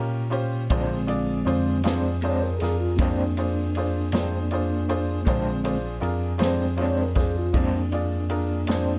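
A laid-back, gritty slow blues in 12/8 at 53 BPM opens on a bright, woody upright piano with audible action noise and a slightly detuned edge, over a clean tine electric piano holding down the bass in Bb mixolydian. A vintage drum kit enters at 0.3 seconds with a punchy kick, medium-tuned snare and ride cymbal. At 0.7 seconds a slightly broken-up, lo-fi electric guitar with tremolo enters alongside a soft, flute-like tonewheel organ, whose key click, chorus vibrato and slow rotary speaker color its solo over Eb9 and Bb9 chords, all set in a dark production with moderate studio reverb.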